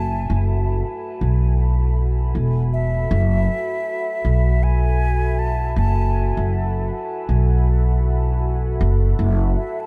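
A hollow, mellow concert flute with vibrato plays a dub-echoed melody over a deep, dark, detuned pad holding one sustained minor eleventh chord through chorus and reverb, while an up-front, woody pizzicato upright bass anchors the low end until 9.5 seconds, giving this swung ambient dub piece a spacious, meditative mood in a small, dark-sounding room.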